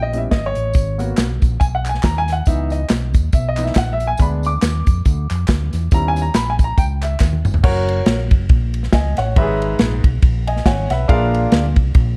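This fervent, soulful slice of uptempo gospel opens with a clear baby grand piano taking the lead over fingered electric bass, moving at 139 BPM in 4/4 with a swung eighth-note feel. The piano carries a solo through the first 7.6 seconds, its present, polished tone sitting up front over rich extended chords such as D#7b9b13, G#m9 and C#m9. Underneath, the bass is dark, round and amped, punchy and close, while the natural country drum kit brings an airy studio-room sound with a punchy kick, medium-tuned snare, hi-hat, ride, crash and toms. A lighter layer of tube shaker and group handclaps sits in the background from 0.7 to 7.5 seconds. A drum fill ushers in a new section at 7.6 seconds, moving through F# and E/G#, and the piano adds a brief fill before the harmony lands on A#7. The production is dark and warm, set in a small room ambience, and the recording is cut from a longer piece.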